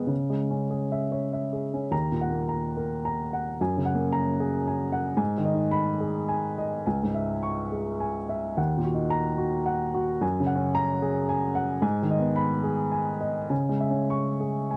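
A lone upright piano, woody and natural with long sustain, sits up front through this short fragment of a neoclassical minimalist piece in C# dorian. The mood is intimate and wistful, drifting in rubato 3/4 at roughly 97-115 BPM, and after a brief opening statement the phrase begins again at 1.9 seconds, circling C#m, D#m, F#add9 and G#m before settling back on C#m at 13.5 seconds. Light reverb barely colors a dry, close 1970s-style studio sound, with the piano tuned to A4 = 439 Hz.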